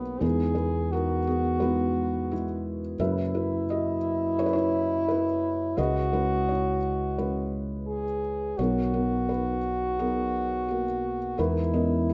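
Folk in B major at 86 BPM, this intimate, nostalgic fragment cut from a longer piece sets a felt-muted upright piano, dark and thick-felted with audible action noise, carrying the melody up front, beside a mellow, distant French horn playing a classical-style second line and a fingered electric bass giving a direct low foundation, all three sounding throughout the 12.1 seconds over Emaj7, F#7sus4, C#m7 and Bmaj7 in a large studio reverb.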